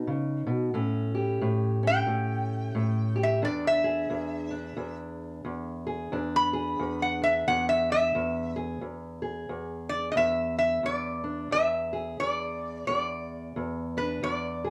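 This is a rollicking, laid-back acoustic country blues excerpt for two guitars, swinging easily at 89 BPM in 4/4 in E mixolydian. A boxy, parlour-sized steel-string acoustic guitar opens alone, fingerpicked in the low and middle register as accompaniment over B, A7 and E7 chords. At 1.9 seconds a lap resonator guitar enters with the melody, played with fingerpicks and a steel bar in a nasal, metallic voice that sits high above the accompaniment, and it carries a slide solo through the first section to 8.8 seconds. A second section follows with both guitars up front until the cut at 14.7 seconds. A moderate studio reverb gives the dark, warm production a touch of room.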